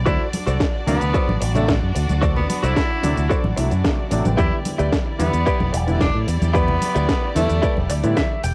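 An up-front, punchy fingered electric bass with an envelope filter drives this sensual, groovy nu-disco excerpt in E minor at 111 BPM, moving from D7 to Em7 under an edgy tenor saxophone melody with tape echo, a clean, scooped guitar riff with lush chorus that closes on a fill at 7.6 seconds, a rich bowed violin section and an intimate grand piano with audible action noise both pumping against the overdriven, cassette-saturated electronic kick and house kit with cracking snare, hi-hat and shaker, very quiet hard-handed congas, and a light reverb over a home cassette recording.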